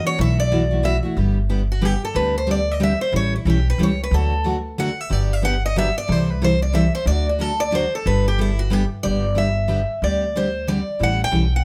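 Acoustic string swing in the jazz manouche style, this charming, swinging fragment in 3/4 features a bright, boxy parlour guitar playing the melody up front, soloing from the opening through 9.0 seconds, over a full-bodied jumbo guitar's accompaniment and a woody, thumpy pizzicato upright bass with dark gut strings, all captured by close, detailed microphones in light reverb.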